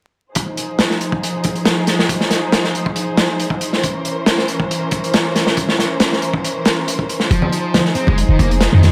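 Breakbeat in F minor at 138 BPM, this short cut from a longer piece has a raw, gritty mood with vinyl crackle and light studio reverb across the recording. From 0.4 seconds a crunchy, saturated acoustic drum kit sits up front with a tight kick, medium-tuned snare and hi-hat, its top rolled off and its parts high-pass filtered. Alongside it a lush bowed string section holds sustained chords, moving from Fm7 to C7b9 at 3.8 seconds, its smooth vibrato roughened by vintage 12-bit sampler grit, a low-pass filter and sidechain pumping. At 7.3 seconds the harmony returns to Fm7 as a deep, boomy 808-style bass enters up front with a fast attack and mellow decay, joined by a dark, picked fuzz guitar riff soaked in distortion and tape echo. Bright, band-limited congas struck with hard hands slip in behind at 7.4 seconds, filling out the final moments.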